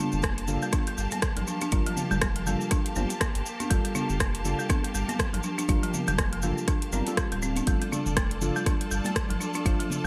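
Warm and spiritual, this afro house excerpt moves at 121 BPM in G minor with a swung 16th-note feel, resting on Gm9 before shifting to Dm at 7.7 seconds. Woody, hard-mallet marimba arpeggios with digital delay and deep, nasal chord stabs dressed in chorus and delay sit over a distant, biting string section holding sustained chords, all three pumping with the sidechain. A round sine sub bass with tube saturation and an up-front, layered electronic kick anchor the groove, while an overdriven afro-pop kit with metallic hats, rim clicks and toms, a grainy cabasa and very quiet saturated congas fill out the percussion in a bright 1980s-style digital mix with light reverb.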